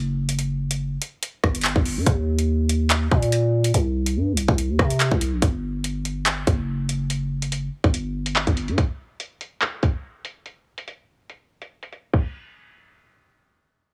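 A growling, buzzy 808-style bass opens this dark, cold drill cut, joined almost at once by an electronic drum kit with a hard-clipped kick, metallic hi-hats, handclaps, rim clicks and crash cymbal, both parts sitting up front in a half-time feel. The bass drops out at 8.8 seconds, leaving the drums to carry on, with the kick muted from 11.3 to 12.1 seconds before the kit stops at 12.2 seconds. The dry, heavily compressed mix has a filtered, radio-like sound.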